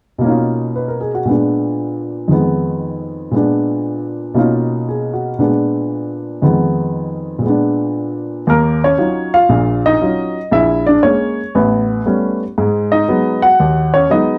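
Solo jazz in Eb minor with a smoky, cool mood, swinging at 117 BPM in 4/4 on a baby grand piano that sits up front, mellow and intimate, with short sustain and audible action noise. The opening passage circles through Bmaj9#11, Bb7b9 and Fm7b5; at 8.5 s the harmony shifts to Ebm9, then moves through Bbm7b5, A9 and Abm7. A moderate club reverb and a dark, warm production surround this short excerpt.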